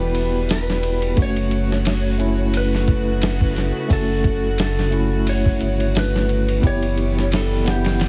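A swung 16th-note groove at 88 BPM in 4/4 sets this brooding, hypnotic trip hop excerpt in motion, carried by a gritty, sampler-style soul drum kit with a thumpy kick, medium-tuned snare, hi-hat and ride sitting up front from 0.1 seconds, while a bright egg shaker joins in the background at 1.2 seconds. Underneath, a round, sine-like sub bass holds deep, sustained notes up front as the mix's foundation. A mellow tine electric piano with tremolo and a touch of vintage 12-bit sampler grit plays the accompaniment, and a dark chamber string section bowed sul tasto with light vibrato and a soft attack lays down intimate sustained chords. Over this, a slightly broken-up electric slide guitar carries the melody in F# phrygian, its compressed tone trailed by tape echo. The harmony moves from Em to F#m and settles on Em over F# at 6.6 seconds, and the whole mix is heavily compressed with a radio-like digital ambience.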